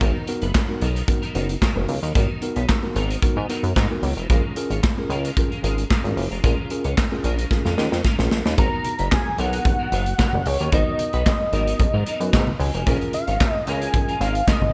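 A glossy, nasal chorused synth bass and a tight, up-front studio drum kit with handclaps, hi-hat, kick and snare drive this slick, danceable early-eighties boogie funk excerpt at 112 BPM in G# dorian, under a mellow tine electric piano with tube saturation and a dark, picked clean electric guitar riff with chorus and slapback echo, before a fat, detuned analog lead with vibrato and tape echo takes the melody and very quiet, damped congas join at 8.6 seconds in a small, lightly reverberant room.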